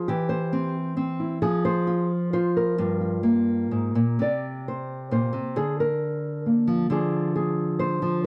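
Haunting and reflective, this short folk fragment cut from a longer piece features a solo nylon-string guitar, dark and thumb-plucked with a small, up-front voice, moving in a rubato 3/4 around 133 BPM through chords like C/E, Gm7, Csus2 and Ddim, captured in a dry, close 1970s-style studio sound with a touch of small room reverb and tuned to A4 = 442 Hz.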